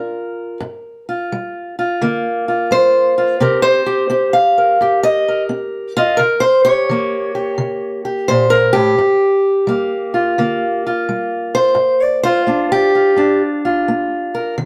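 A fingerpicked steel-string parlour guitar sits up front with a warm, boxy tone, carrying this brooding, mournful acoustic country blues solo across its full 14.7 seconds. At 86 BPM in 4/4 with a swung eighth-note feel, the guitar moves through G minor from Gm7 to Cm7 and a tense C#dim7 before settling back on Gm7 at 9.0 seconds, spanning G2 to F5. A moderate studio reverb gives the playing a modest sense of room in this short section cut from a longer piece.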